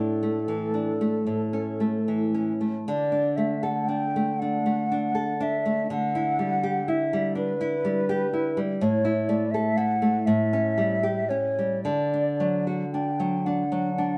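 Swaying in a lilting 6/8 with uneven, rubato beats that stretch and relax, this excerpt is a serene, romantic duo for flute and classical guitar, tuned slightly below standard pitch. The silver concert flute carries the melody from start to finish, its tone airy, hollow and mellow, shaded with vibrato and tongued notes. Beneath it, the nylon-string guitar plays fingerpicked accompaniment throughout, full-bodied and sitting up front, with the occasional finger squeak adding intimacy. The harmony drifts from a suspended A chord into D, touches Em over a D bass, then moves through A5 and A7 before settling back on D near 11.9 seconds. The two players sound as if they are performing together in one room, wrapped in a moderate studio reverb that gives the whole a gentle, warm glow.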